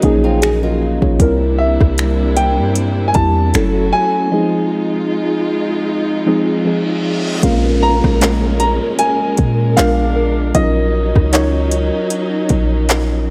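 Muted, felt-like synth keys with a chorus shimmer, bowed studio strings, a deep, boomy 808-style bass and an overdriven R&B drum kit of soft kick, metallic hats, finger snaps, handclaps and rim clicks open this longing, sensual slice of contemporary R&B, with a very quiet FM synth bell glinting in the background. A boxy, fingerpicked flamenco guitar flickers through delayed arpeggios at 0.2 seconds before an intimate grand piano, its action noise audible, takes up the melody from 1.6 seconds. During a break that begins at 4.3 seconds, a reverse cymbal and downlifter arrive at 6.3 seconds to usher in the second section, all held in a light reverb.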